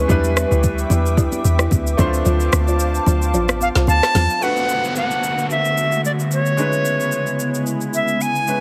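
Hypnotic, soulful amapiano with a lightly swung groove, where a deep, round log drum bass and ringing, high-tuned congas ride the opening drop beside a woody, soft-mallet marimba with delay, a tape-warm R&B kit with woody snare and metallic hats drops its kick at 2.3 seconds, a bright, worn grand piano and a glassy, sidechain-pumped FM pad hold the chords throughout, a pure, reedy flute with vibrato and delay takes the melody from 3.6 seconds, and an electronic downlifter sweeps under the second half, all in a heavily compressed, radio-style mix with light studio ambience.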